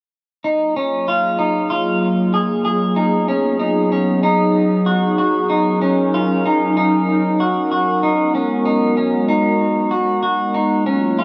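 Dream pop at 95 BPM in F# major, this blissful, ethereal excerpt opens with a clean electric guitar picking arpeggios from 0.4 seconds, its tone lush with chorus and tape echo, before a warbly, nostalgic tape-like pad enters at 0.9 seconds with sustained, slow-attack chords. The harmony drifts through F#maj9, B6, D#m7 and G#m9 before returning to F#maj9, while the lo-fi, wave-folded pad carries its own chorus and reverb. A huge ambient reverb with a 6.8-second decay bathes the dark production, and both parts sit up front.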